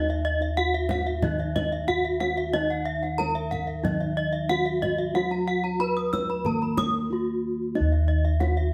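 Balinese gamelan in Eb pelog at 92 BPM, brilliant and hypnotic, cut from a longer piece: a bronze metallophone melody and two layers of metallophone arpeggios ring over round, mellow bossed gongs carrying the bass and a deep kendang played with soft hands, a lower metallophone accompaniment joins from 2.5 to 7.8 seconds, and some metallophones struck with horn mallets sound bright with shimmering beats from their paired tuning while another struck with a wooden mallet sounds dark and smooth, the band playing live in a moderate stone room.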